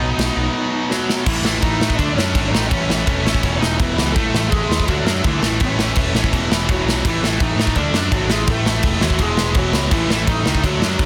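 A big, up-front acoustic rock kit with a punchy kick and bright cymbals enters at 0.2 seconds and drives this rowdy, upbeat 166 BPM punk rock excerpt from a half-time opening and a drum fill into full pace at 1.3 seconds, under a double-tracked, overdriven rhythm guitar riff, a growling picked bass and a lo-fi lead guitar melody through a small cranked amp with digital delay, all moving through A, D and E chords in a dry, dense, heavily limited mix.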